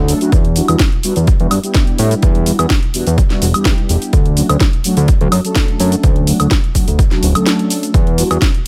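A straight groove drives this short cut from a longer filtered disco house track, anchored by a punchy, overdriven electronic kick that sits up front with a touch of small-room ambience. Around it, a layered house kit of bright hi-hats, shaker, a cracking snare and woodblock carries its own overdrive and room sound, with the hats and percussion pumping against the sidechain. A fat analog bass, thick and nasal with detuned sawtooth and square-wave saturation, holds the low end with sustained, evolving tones that also breathe with the sidechain pump. Above it, mellow synth brass plays a round, full-bodied, dark accompaniment with chorus, vibrato and a phaser, pumping in time as well. The harmony moves from Em9 to Dmaj7 at 4.1 seconds and returns to Em9 at 7.9 seconds, giving the dry, close mix a sensual, funky lean.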